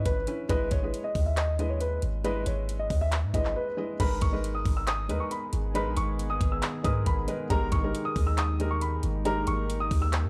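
A dark concert grand piano carries the melody through an analog delay, set over a soft, felt-muted upright piano with audible action noise and a boomy 808-style bass with a fast attack. This menacing, eerie trap cut in G# harmonic minor moves at 137 BPM in a half-time feel, with an up-front electronic kit of knocking kick, metallic hi-hats, handclaps and crash, and a brief break at 3.6 s. At 4.9 s a deep, detuned sawtooth ambient pad with chorus and a long release adds sustained chords under the G#madd9 and D#/G# harmony, all captured in a dry, gritty hardware recording with light reverb.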